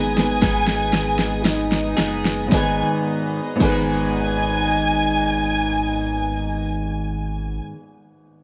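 A straight, slow 56 BPM pulse in 4/4 opens this emotional, melancholic pop ballad fragment in G# minor, with a drum fill and a slowing of the tempo across its first 2.5 seconds, all resting on a G# minor chord from the very start. The electronic, layered pop kit sits up front with a punchy kick, fat snare and crash cymbal, joined briefly by a jingly acoustic tambourine in the background, and the drums drop out at 3.9 seconds. A dark, woody violin section carries the melody on a high G#, bowed sul tasto with vibrato and a slapback echo, sounding lush and distant yet forward in the blend. Beneath it, a natural baby grand piano plays the accompaniment, a bright, twangy clean electric guitar picks compressed arpeggios through spring reverb, and a deep sine-and-triangle sub bass holds the low end. A pure, floating string section sustains soft-attack chords in the background, while a mellow French horn section enters at 0.9 seconds with a classical-style second line, also touched by slapback echo, all set in a light studio reverb.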